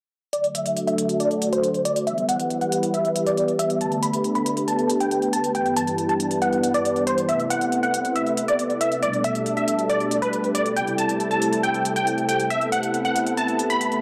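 Uplifting trance, euphoric and soaring and cut from a longer piece: a punchy, bright detuned supersaw stab carries the melody through a low-pass filter sweep and dub echo, over an airy, evolving supersaw swell whose low-pass-filtered sustained chords move from D through Em and Gadd9 to C6 and Amadd9, while a smooth, tape-tinged electronic hi-hat re-recorded in a small room sits lower in the mix, the whole set inside a huge ambient reverb.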